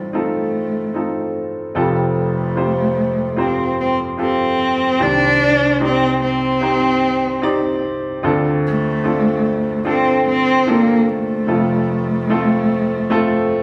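In a straight, unhurried 4/4, this melancholic pop fragment, cut from a longer piece, carries a mood of longing as a dark, woody solo cello bows a vibrato-laden melody up front. Beside it, a warm, open baby grand piano supplies the accompaniment across a broad span, moving from F7/A through Fadd9, Cm and Dm7 before settling on F. Both players sound as if performing together in one large studio, bathed in a wet reverb that lingers around every phrase.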